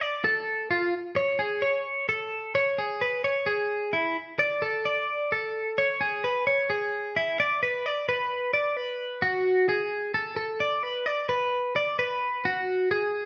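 A bright, clean twelve-string electric guitar rings out, picked and twangy, up front and compressed, carrying a playful rock excerpt in a brisk 7/8 at 261 BPM in A major, its part moving between E4 and D5 and shifting to a new section at 7.4 seconds, all set in the lush, wet reverb of a large studio room with a live-band feel.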